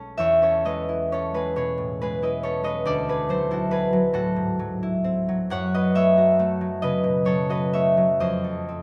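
Swaying in an uneven, rubato 6/8 at about 45 dotted-quarter beats per minute, this dreamy, serene classical fragment in E major, cut from a longer piece, features a solo concert harp, fingerpicked and ringing from B1 up to D#6, placed up front with close, detailed microphones and light reverb as the harmony drifts from E6 through D9 and F#m7 to F7 across about 8.8 seconds.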